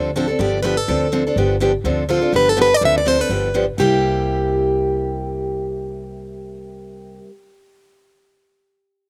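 Lively and swinging, this short excerpt of acoustic string swing in the jazz manouche tradition races along at 248 BPM in 4/4, with a 55% swing on the eighth notes and a C mixolydian colour. A picked steel-string acoustic guitar sets the accompaniment from the first moment, bright and up front with a concert-guitar character. An upright bass, plucked pizzicato, sits underneath with a woody, dark, thumpy tone. From 0.2 seconds a plugged-in steel-string acoustic guitar carries the melody, crisp with fresh strings and a fuller auditorium body, and it stands slightly forward of the other parts. The harmony rocks between G7 and Dm7 before moving to C7 at 3.8 seconds as a new section begins. The sound is dry and close, caught outdoors with little reverb, and the clip breaks off as it is cut from a longer piece.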